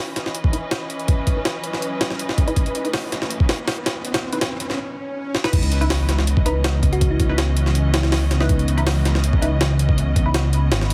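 A straight four-four jungle groove from a sampler-style drum kit drives this dark, nostalgic drum and bass excerpt, its thumpy kick, high-tuned snare, hi-hat and crash cymbal sitting up front with overdriven, pitched-up grit. Muted, con sordino strings sustain veiled chords throughout, opening on C#m9, tinged with vintage 12-bit sampler crunch, while a filtered dub chord stab with phaser, lush chorus and dub echo rides a filter sweep through the build-up. Background electronic effects add a riser and swell before a drum fill tips into the drop at 5.5 seconds, where an impact lands and a detuned sawtooth bass enters, deep, rumbling and beating. Briefly from 6.5 seconds, a round, tine-like FM pluck resembling a thumb piano floats in the background through chorus, cassette tape colour and dub echo. The mix carries light reverb and a heavily compressed, radio-like sound.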